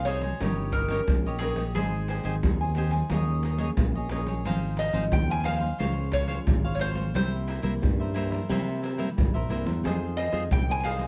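Closely miked with light reverb, this bittersweet, nostalgic samba-choro excerpt sets a metallic, nasal lap resonator guitar, played with slide and fingerpicks and touched by slapback echo, singing the melody over crisp picked cavaquinho, a full-bodied fingerpicked nylon-string guitar in the background, a bright, growly fingered electric bass up front, and pandeiro, egg shaker and deep surdo struck with hard hands, joining at 0.1 seconds.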